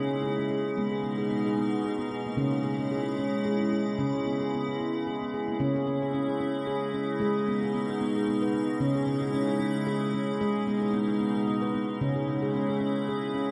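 A wet, spacious studio reverb surrounds this fragment of gentle, meditative world music built on tuned percussion. It moves in a lilting three-beat metre with a light swing. A stainless-steel handpan, struck with the fingertips, plays ringing arpeggios from 0.0 to 13.5 seconds, its dark, smooth tone sitting up front and trailed by a diffuse ambient delay. Alongside it, an icy glass pad holds sustained chords for the same span, its crystalline, airy voice blending sine tones with a noise layer, a slow attack and a long release, treated with chorus and its own reverb. The harmony rocks calmly between C# minor and G# minor throughout, giving the passage a still, contemplative glow.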